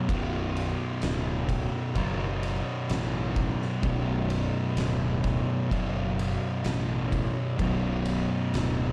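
A dark, small-room production frames this sludgy, hypnotic stoner and doom metal excerpt in B minor at 64 BPM, where a double-tracked, up-front fuzz guitar plays a low riff over a Bm chord from 0.0 s, a growly, overdriven fingered electric bass sits beneath it, and an oversized low-tuned acoustic drum kit, with a fat snare, punchy kick and ride cymbal, sounds saturated and gritty in a bright stone room.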